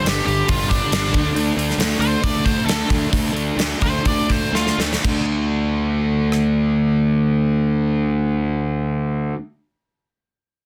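A nasal lead guitar with a parked wah carries the melody from the very start, its overdriven tone trailed by a digital delay as it plays a solo that slows down from 1.3 seconds until it drops out at 4.8 seconds. This heavy, driving hard rock cut, taken from a longer piece, moves in a straight 4/4 at roughly 118 to 138 BPM over G5 and D5 power chords. Beneath it, a bright, scooped and compressed distorted electric guitar plays the riff alongside an overdriven semi-hollow guitar that adds a hollow-body glow, both running through to 9.4 seconds. A fuzz-drenched picked bass sits up front with a dark, round, punchy growl, while a gated 80s drum kit in a bright stone room brings crisp cymbals, a tight kick and a medium-tuned snare with soft clipping, adding a fill from 4.5 to 5.0 seconds before stopping at 6.4 seconds. Light reverb and a dense, heavily limited modern master keep the whole mix polished and loud.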